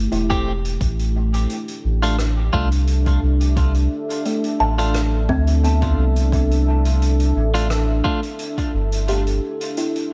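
Set in a small room with light reverb, this hazy, deep ambient dub fragment moves at 87 BPM in 4/4 with a gentle swing on the sixteenths, cut from a longer piece. A dark, detuned sawtooth pad with chorus and its own reverb holds sustained chords from Am7 to D5/A, while a woody, band-limited kalimba with a vintage, mellow tone plays short arpeggios through dub echo. Up front, a round, soft sub bass with tube saturation anchors the low end until 9.4 seconds. A soft-mallet kit sounds distant and roomy, with hi-hat and rim click, and an overdriven electronic kick sits in the background until 8.7 seconds. A clean, picked electric guitar adds compressed stabs through dub echo.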